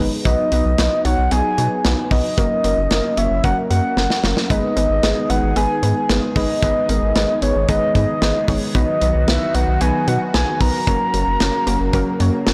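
Driving and nocturnal, this synth-pop piece at 113 BPM in G# minor pairs a deep, round analog bass with transformer saturation and a warbling, dusty, lo-fi pluck with chorus, while a soft octave-layered lead with vibrato, chorus and tape echo carries the melody over a punchy, up-front studio drum kit whose fill at 4.0 s ushers in a swirling phased pad in the background from 4.5 s, set in a small room with light reverb and a blown-out, overdriven sound as the chords move through B, F#, G#m, B and F#.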